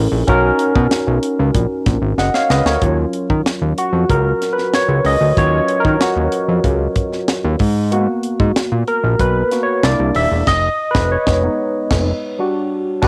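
A straight 4/4 groove from a dry, tight funk drum kit with bright cymbals and a high-tuned snare joins at 0.3 s beneath a fat, detuned analog bass and a barky, lightly overdriven tine electric piano with chorus, and after a drum fill at 2.2 s the electric piano takes a solo from 2.8 s that runs into a band accent at 10.5 s, giving this polished 1980s jazz-funk pop excerpt, recorded at home on cassette in a booth with moderate ambience, a nocturnal, urban mood.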